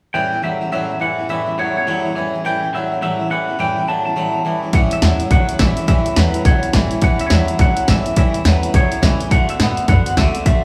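Retro and upbeat, this rockabilly excerpt from a longer piece swings in 4/4. A slightly broken-up, lo-fi, twangy electric guitar played through a small old amp carries the melody, and a clean, fingered electric guitar plays a low riff, both with spring reverb. A bright, full-bodied jumbo steel-string acoustic guitar is picked for accompaniment, with audible finger squeak. At 4.7 seconds, a woody, thumpy gut-string upright bass joins in the background, and an up-front analog drum machine enters with punchy kick and snare plus hi-hat. The harmony rests on A7 before moving to D7 at 9.3 seconds, and the band sounds as if playing live together in one room, with moderate large studio reverb.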